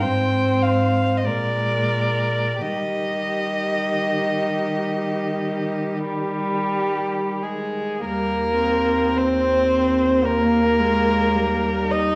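Classical chamber music: a slow, romantic movement for string quartet in Eb major, serene and lyrical, moving in a rubato 4/4 at roughly 41-57 BPM. All four players are muted throughout, giving the ensemble a veiled, con sordino hush. The first violin carries the melody close and up front with a soft attack and vibrato, while the second violin sings a darker, more distant second line. The viola fills in a low, shadowy accompaniment, and the cello anchors the bass with only light vibrato. A wet recital hall reverb and a dark, warm production wrap the quartet as the harmony moves from Fm/Ab through Bb7 to a settled Eb, with a new section beginning at 8.1 seconds in this fragment cut from a longer piece.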